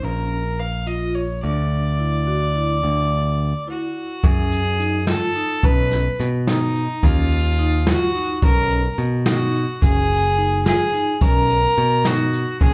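This intricate, tense progressive instrumental opens with a bowed fiddle carrying the melody in a reedy, gut-string tone, over ringing, metallic vibraphone arpeggios played with medium mallets and a slow motor vibrato, and a bright, direct picked electric bass sitting up front. The band moves in an uneven 5/8 at 215 BPM counted in eighths, with a straight feel, and the harmony starts on Bbm before shifting to Dsus2. A short break arrives at 3.5 seconds. At 4.2 seconds a jazz kit played with brushes joins for the next section, adding an airy, polished snare of medium tuning, a boomy kick and hi-hat. The chords then cycle through Gbmadd9, B, Ebm7 and Gbsus2, always returning to B. The players sound as if they are performing live together in one large studio room with a moderate reverb, and the recording is cut from a longer piece.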